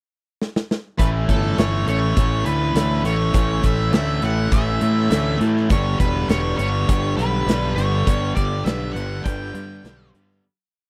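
Classic rock with a driving, confident feel opens with a drum fill at 0.4 seconds on a punchy, up-front acoustic kit before a dark, fuzzy octave-fuzz lead guitar with slapback echo plays motif-based phrases over a growling, overdriven fingered bass pumping eighth notes, a tight, bright distorted guitar and a crunchy overdriven guitar both driving eighth-note chords in the background, and a boxy picked acoustic archtop strumming open shapes, all in a dry, close 1970s-style studio sound that moves from A to G before fading out from 8.1 seconds.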